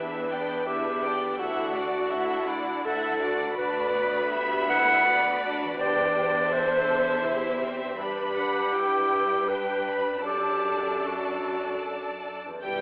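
A cinematic, emotional film score for orchestra, this short passage from a longer piece carries a bittersweet, longing mood at 75-85 BPM in a rubato 3/4. A warm solo clarinet sits up front, sharing the second line with a violin section that sounds soft in attack, expressive and smooth on top. Beneath them, a rich, even viola section supplies accompaniment and a focused cello section holds the bass, while a bright, ringing concert harp plays thumb-plucked arpeggios in the background. The harmony drifts through chords such as Em7, Dadd9, Gmaj7/D and Cadd9/E, all within a scoring-stage reverb that, oddly, takes on a telephone-like sound. At 12.6 s a distant, lush violin section touches a single melody note as a clear double bass section enters low in the background, just before the passage is cut off at 12.8 s.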